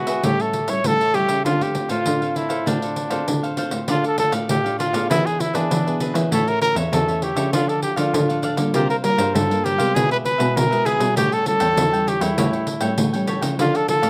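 Samba and choro at 99 BPM in D minor, this nostalgic, bittersweet fragment of a longer piece features an up-front jazz-style trumpet carrying the melody with a light vibrato, over crisp picked cavaquinho and a thumb-plucked classical nylon-string guitar in the background, both touched with slapback echo. A jingly pandeiro played with soft hands and a distant, reedy bowed cello with a nasal gut-string, period-style tone fill out the rhythm and bass. The dry outdoor sound carries little reverb, and the harmony turns to D harmonic minor at 3.9 seconds.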